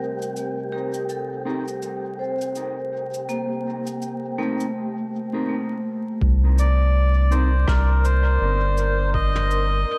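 A hazy, deep ambient dub fragment opens on a detuned, warbling pad holding sustained chords, metallic vibraphone arpeggios with fast motor vibrato and dub echo, and a breathy, wind-like tuned noise, while a distant brushed kit with cabasa, rim click and toms and clean, fingered electric guitar stabs drift in behind. At 6.2 seconds a round analog bass arrives up front with a muffled, thumpy kick in the background, and at 6.6 seconds a reedy, nasal melodica melody with 12-bit sampler grit joins them, all set in light reverb amid vinyl crackle.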